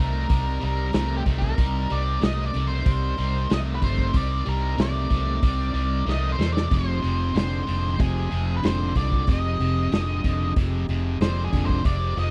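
A dry, close recording with a 1970s studio feel frames this heavy, gritty blues rock and southern rock excerpt in C minor, moving at 94 BPM in a straight 4/4 and shifting from Cm9 to Fm9 at 6.7 seconds. A picked, double-tracked distorted guitar riff sits low over a round, foam-muted fingered bass placed up front, while a raw garage drum kit with a punchy kick and medium-tuned snare enters at 0.3 seconds and plays a fill from 6.1 to 6.7 seconds. Above them, an octave-fuzz lead guitar carries the melody, and a thick, overdriven tonewheel organ holds sustained chords through a slow rotary speaker in the background.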